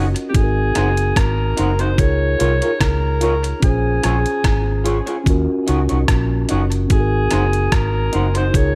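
Lovers rock reggae with a sweet, tender mood, this short excerpt from a longer piece moves at an unhurried pace with a lightly swung sixteenth-note feel. A breathy alto saxophone carries the melody from 0.3 s, its vintage, jazz-style subtone tone and scooped notes softened by a dub echo. Underneath, a dark, round, foam-muted fingered electric bass sits up front with a punchy, amped sound. A detuned 8-bit drum machine with a thumpy kick, hi-hat and rim click enters at 0.2 s, sounding sampler-like and re-recorded in a large room with gated reverb. A mellow tine electric piano plays clean accompaniment through its built-in speakers, while a bright, twangy electric guitar, slightly broken-up through a small old amp, adds picked stabs until 8.4 s. The chords cycle through Ab7, Db6, Bbm7 and Ebm7 before returning to Ab7, and the overall mix is dry.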